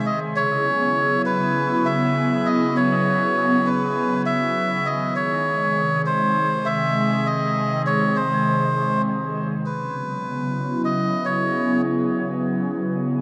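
Opening with a breathy, detuned pad holding sustained chords under a reedy, nasal melodica line, this hazy, spacious ambient excerpt in C# minor at 100 BPM moves from C#m7 to G# and back over a loose 16th-note swing, the melodica carrying dub echo and 12-bit sampler grit until 11.8 seconds while the chorused, phased pad lingers to 13.2 seconds inside an echo-heavy mix with a small room's spring reverb.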